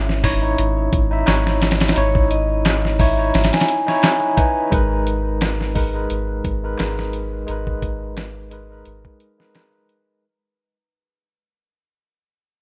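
A barky tine electric piano, lightly overdriven through a combo amp with tremolo and tape echo, opens this dark, melancholic trip hop excerpt in G# minor alongside a deep, round dub sub bass with tube saturation. A dusty soul sampler-style kit joins almost at once, its compressed, gritty sound built on a thumpy kick, fat snare and hi-hat, sitting up front in a 4/4 groove at 87 BPM with a light swing on the sixteenths. A crisp metal-shell darbuka sits distant in the background, as if in a large room. From 2.0 to 4.6 seconds a vibraphone played with medium hard mallets and motor off adds a brief, metallic, ringing melody touched with tape echo. The harmony moves from C#madd9 over G# to G#madd9 at 4.7 seconds, where the whole piece begins to fade out and a filter sweep works on the sub bass. Light digital ambience and a rough home-demo mix give the recording a loose, unpolished feel.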